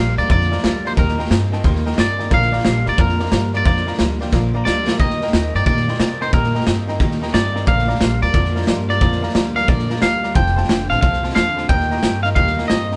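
A raw garage drum kit, gritty and punchy with a pumping small-room sound and a fill at 4.3 seconds, drives this rowdy, upbeat rockabilly excerpt at 179 BPM in Bb major with a swung feel, as a clean, twangy electric guitar carries the melody up front over thumpy pizzicato upright bass on gut strings, a slightly broken-up electric guitar through a small old amp picks out a riff and a bright, full-bodied steel-string acoustic guitar picks along in the background, while a jangly, metallic tack piano adds short percussive accents, with light reverb giving a live one-room feel.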